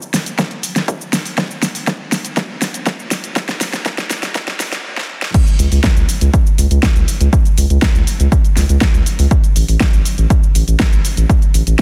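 A dense, heavily limited modern master with light digital ambience frames this driving, emotional slice of progressive house, cut from a longer piece. It opens on a build-up with a drum fill and a filter sweep, as an overdriven deep house kit of crash cymbal, hi-hat, shaker and fat snare sits up front, its cymbals, hats and percussion pumping against the sidechain. A punchy, overdriven electronic kick joins at 0.4 seconds, layered and re-recorded in a large room. The drop lands at 5.3 seconds, and a saturated sub bass arrives moments later at 5.6 seconds, a thick sine tone with a fast attack and sustained notes that pump in time with the beat. From there the kit, kick and sub carry the section forward in a steady, straight 4/4 groove, all placed squarely at the front of the mix.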